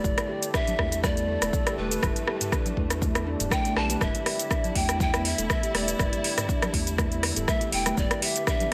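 Earthy and warm, this afro house passage, cut from a longer piece, rides a lightly swung groove over a single Em7 chord, with a breathy bamboo pan flute carrying the melody through gritty 12-bit sampler color and dub echo. Mellow, ringing handpan arpeggios share that grit and echo, while lush bowed strings hold sustained chords and a round, deep analog bass anchors the low end, and all three pump against the sidechain. Up front, a tape-toned afro-pop kit of cabasa, metallic hi-hat, rim click and toms plays alongside a deep electronic kick, while high-tuned, thick-skinned congas stay in the background.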